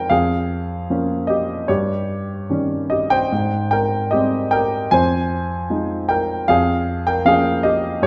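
Rubato phrasing stretches a slow 4/4 pulse around 76 BPM in this calm, tender passage of lyrical classical solo piano, cut from a longer piece. A concert grand sits up front with a present tone, deep bass and short sustain, moving through gentle harmonies from Db6/F and Eb7/G to Abmaj7 and Fm7 before settling back on Db6/F. A wet recital-hall reverb, as heard in a church or concert hall, surrounds the instrument with a spacious glow.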